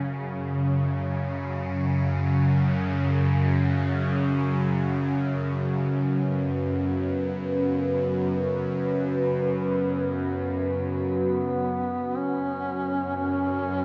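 A deep, moody pad fades in over a sustained F#5 chord while a tense, string-like bowed drone sits up front beneath it, its bright, detuned sawtooth tone coloured by phaser and vibrato. This dark, ominous ambient passage drifts in free time inside a huge, wet reverb, the pad shimmering with chorus and its sub octave adding weight. At 11.2 seconds a solo duduk enters with a folk-style melody, its vibrato-laden voice carried on tape echo until the cut at 13.8 seconds.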